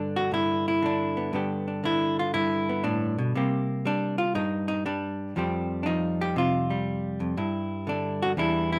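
Solo jazz, sophisticated and warm, played by a single electric hollow-body jazz guitar that fills the whole passage, a brief section lifted from a longer piece. The guitar sits up front with a clean, picked, warm tone and a hollow-body character, ranging from low E2 up to G4. The music moves in 4/4 with a swing on the eighth notes, giving the line a lilt. The harmony opens on Gmaj7 and settles onto G, then shifts through Csus2 and Fsus2 before coming to rest on an open G5 near 7.4 seconds. A moderate studio reverb adds a touch of room around the instrument while keeping it close.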